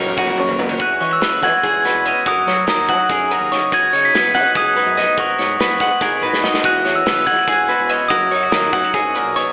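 Wistful and bright, this math rock and midwest emo passage in 7/8 opens with a biting, double-tracked overdriven guitar riff and a drum fill that stop at 0.8 s, when a mellow, bell-like glockenspiel melody enters up front over the ongoing twangy twelve-string electric guitar chords, chorus-drenched clean electric guitar arpeggios with slapback echo and delay, a punchy, growling fingered bass in the background, and a loose indie drum kit with a pumping small-room sound that plays another fill at 6.0 s, all set in a lush hall reverb with a big arena feel and a telephone-like tint.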